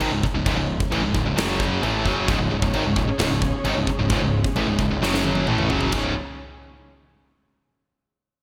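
Heavy metal at 132 BPM with a heavy, relentless mood, this excerpt stacks three bright, distorted electric guitar riffs (a scooped high-gain one, a tight one in the background and a very quiet double-tracked one) over a punchy fuzz-overdriven picked bass and a big, up-front acoustic rock kit with punchy kick, china and crash cymbals, snare and toms bathed in gated reverb, while a dark, veiled con sordino string section holds lush sustained chords in the background, a drum fill arrives at 5.0 seconds, and the whole sits in a lush hall reverb with bright 1980s-style digital production.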